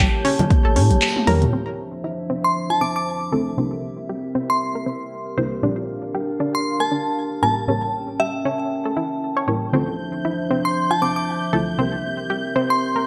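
A deep, late-night mood settles over this deep house excerpt in D minor, moving at 117 BPM with a light 16th-note swing over chords that cycle through A7b9, Dm9, C7 and Bb6. A moody, detuned analog pad holds sustained chords while a bright analog pluck runs arpeggios and a soft, dark chord stab punctuates the harmony; all three breathe with sidechain pumping, and the pluck and stab carry chorus and digital delay, with a phaser on the stab. The opening moments are the busiest: a round sine sub bass, an overdriven, layered electronic kick, a punchy tape-warm drum machine with handclaps, hi-hat and toms, and ringing congas in the background all drive the groove, with the kick dropping away for a short drum fill before the rhythm section falls silent at 1.5 seconds. From there a filter sweep works on the arpeggio, and at 2.4 seconds a crystalline FM synth bell steps up front with the melody, treated with chorus, phaser and delay. 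A distant, bowed violin section with expressive vibrato adds a high texture at the start and returns at 9.7 seconds. Moderate plate reverb and a bright 1980s-style digital production tie the sound together.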